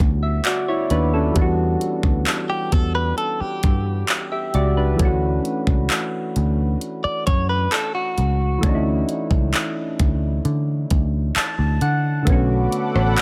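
Contemporary R&B with a sensual, late-night mood, moving at an unhurried straight pulse in a short excerpt cut from a longer piece. Soft, round electric-piano-like synth keys with a chorus effect carry the accompaniment over chords of Bm7, Em7 and Dmaj7, adding a fill from 10.9 to 12.3 seconds. Beneath them, a vintage muted picked electric bass sounds dark and punchy, while a smooth, produced drum kit supplies a knocking kick, hi-hat, rim click and handclaps from a small room. A direct-recorded clean electric guitar plays compressed arpeggios from 2.5 to 9.3 seconds, colored with vibrato and tape echo. In the final moments a lush, detuned unison pad with chorus, phaser and sidechain pumping appears at 12.6 seconds, and the dry, up-front mix keeps every detail close.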